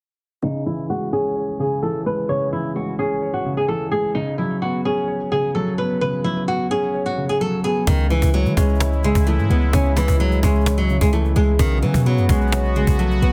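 A fingerpicked flamenco guitar carries the melody up front, its finger squeaks audible through a low-pass filter and digital delay, over a dark, mellow grand piano with short sustain, as a filter sweep runs from 0.4 to 7.9 seconds in this menacing half-time trap cut at 129 BPM in C# minor, moving between C#m and Bsus2. At 7.9 seconds the track turns hard-hitting as a deep, boomy 808 bass with a fast attack and a noise layer arrives, joined by a snappy, close and dry cajon and a bright, evolving sawtooth pad with chorus, a slow attack and a filter swell. Light small-room reverb surrounds a dense, heavily limited modern master.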